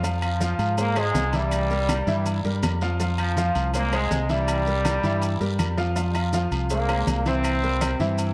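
A straight 4/4 salsa groove at 162 BPM drives this danceable F minor excerpt, with a round, punchy fingered electric bass up front and a clear grand piano accompanying over an Fm to C7 vamp, while low-tuned congas, ringing agogo bells and timbales, raspy guiro, grainy maracas and distant woody claves sit behind. From 0.2 s a vintage trombone section with light vibrato carries the melody through tape echo, and the whole cassette recording sits in a moderate spring reverb.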